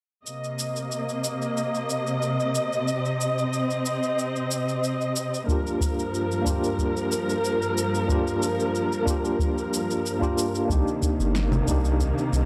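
Warm and wistful, this 92 BPM sunset chillout excerpt in C minor opens with lush, bowed symphonic strings holding dark, vibrato-laden chords over fat-snared electronic cabasa, snare and congas, before a worn, slightly out-of-tune tine electric piano with medium tremolo and tape echo joins at 5.4 seconds, a deep electronic kick follows at 5.5 seconds, and a round, up-front analog bass arrives at 10.7 seconds, all captured in a dry, gritty recording with transformer saturation.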